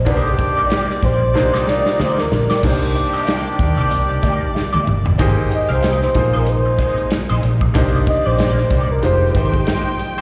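Swung sixteenths in 4/4 drive this bittersweet, silky fragment of 1970s-style soul, where a breathy, whispered flugelhorn opens with a solo and then carries the melody over a punchy, up-front studio drum kit with fills, a round foam-muted electric bass, an intimate baby grand piano with audible action noise, a lush bowed string section in the background, a slightly broken-up electric guitar riff colored by wah and analog chorus, and vintage horn-section stabs that stop at 4.8 seconds, all heard as a live gig through the venue's PA in recital-hall reverb.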